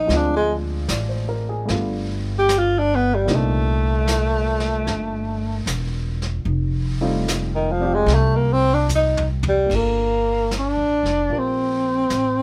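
A slow, swung jazz ballad at 75 BPM in 4/4 with an intimate, melancholic mood, this excerpt features a mellow tenor saxophone carrying the melody up front, its subtone, vibrato and scooped notes soloing over the first 9.7 seconds through a Dm7b5, G7, Cm7 and F9 progression. A woody upright piano accompanies softly beneath, while a pizzicato upright bass with steel strings sits forward in the mix. A vintage brush drum kit with dark cymbals, a punchy kick and a rolled-off top plays from a distant, roomy small space, adding a fill from 8.9 to 9.7 seconds before the music moves to a Gm9 in the next section.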